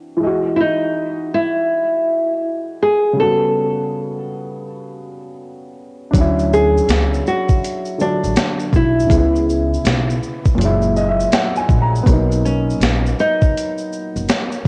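Lo-fi hip hop at 81 BPM with a swung 16th feel in B major, this cosy, dreamy excerpt from a longer piece opens on a dark, mellow upright piano with audible action noise, joined at 0.6 seconds by a fingerpicked nylon-string guitar melody, both muffled by cassette tape and low-pass filtering. A woody pizzicato upright bass and a gritty 12-bit boom bap kit of thumpy kick, high-tuned snare, finger snaps, hi-hat and shaker then arrive at 6.1 seconds, with a piano fill at 10.6 seconds over jazzy chords like Emaj9 and F#9, all in a small-room, home cassette sound.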